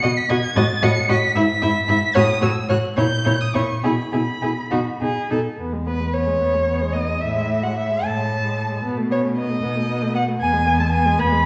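A 6/8 pulse, pushed and pulled with rubato, drives this lively, spirited classical-period movement for string quartet, cut from a longer piece. A distant first violin carries the melody, sliding expressively between notes over a rich, up-front second violin line and a warm viola accompaniment that also use portamento, while a smooth, even cello anchors the bass. Each part is a single bowed player with vibrato, and the quartet sounds through a reverberant recital hall as if heard from further back in the room, with the harmony settling into a fresh phrase at 5.6 s.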